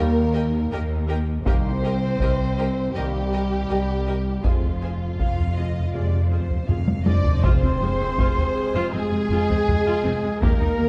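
The excerpt opens on a full string body and brass, with a soft-attacked, vibrato-rich violin melody over a focused second violin line, distant violas, dark roomy French horns, clear very quiet trombones, and bowed cellos and double basses in the background, in a dark, relentless F dorian film-score cue at 80 BPM. Compressed, saturated taiko struck with heavy sticks enters at 1.5 seconds, and hard-mallet calf-head timpani follows at 4.5 seconds with a fill that a drum fill joins at 6.7 seconds. A distant, pure-toned flute and dark trumpet stabs join at 7.1 seconds, and at 7.4 seconds a huge, bright impact lands, all within a scoring-stage reverb.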